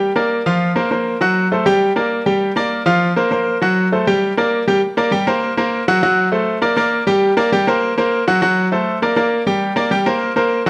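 Fiery and danceable, this short latin cut from a longer piece sets a solo grand piano racing at 200 BPM in G minor, cycling through Gm, Bbsus2 and F#dim chords between F3 and G5. The piano sounds brilliant and up front, with short sustain and audible action noise that make it feel intimate, while close, detailed microphones catch its polished tone inside a moderate recital hall reverb. A second section begins at 4.8 seconds and carries the same harmonic loop through to 10.7 seconds.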